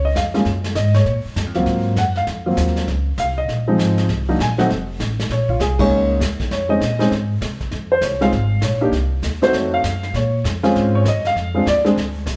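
A swung 4/4 at 198 BPM drives this cool, moody jazz piano trio fragment in Bb minor, where a natural-sounding baby grand carries the melody up front over woody pizzicato upright bass and a vintage brush kit with dark cymbals and a punchy kick, the band playing together in a large studio room with moderate reverb, hitting a shared accent at 5.7 seconds before the piano drops out at 11.9 seconds and bass and drums carry on to 12.4 seconds.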